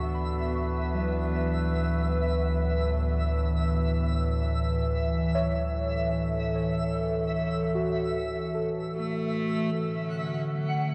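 A worn, warbling cassette haze and a wet cathedral reverb wrap this luminous, serene ambient excerpt in D major at 75 BPM, where a nostalgic, detuned tape-like pad holds a Dadd9 chord up front, muted felt-like synth keys drift in chorused, delayed arpeggios, a round analog bass sits deep on D2 until 9.7 s, a reedy harmonium drone breathes in the background as it fades out, a twinkling granular texture adds octave-up shimmer, and a clear, focused bowed cello with vibrato enters at 9.0 s to carry the melody.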